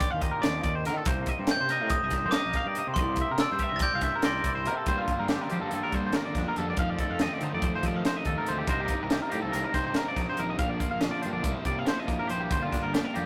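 In a straight 9/8 at 283 BPM counted in eighths, this restless, wistful math rock and midwest emo piece in G minor sets a crisp fusion drum kit with a high-tuned snare up front over a growly fuzz bass, with two clean, twangy electric guitars, one playing tremolo-treated accompaniment and the other picking arpeggios in the background, while a sparkling glockenspiel melody rings from 1.5 to 4.7 seconds before a double-tracked, overdriven guitar riff enters at 4.9 seconds, the whole captured as a rough rehearsal-room recording with light reverb and tube saturation.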